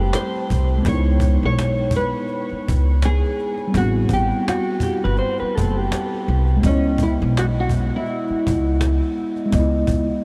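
Over a swung 4/4 groove, a snappy, compressed cajon and a woody, pizzicato upright bass sitting up front anchor this reflective, melancholic lo-fi hip hop excerpt as the harmony shifts between Am7 and C#m7. A fingerpicked nylon-string guitar with old strings carries the melody through analog chorus and diffuse delay, while a mellow tine electric piano with a cassette-tape haze supplies the accompaniment. A slightly broken-up electric guitar through a small old amp adds a second line until 6.6 seconds, all within a dreamy mix soaked in huge ambient reverb.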